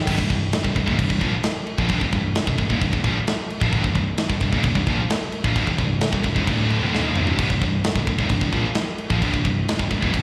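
A crunchy, double-tracked overdriven guitar with slapback echo opens alongside two high-gain guitars, one scooped and one set back in the mix, all driving a riff in C minor at 131 BPM in an aggressive, epic heavy metal fragment cut from a longer piece. A growly picked electric bass and an up-front, big-room acoustic drum kit with a tight kick, medium-tuned snare, toms and crash join at 0.1 seconds, with a drum fill at 6.9 seconds. The whole band sounds like a live gig heard through a venue's PA, carrying a recital-hall reverb.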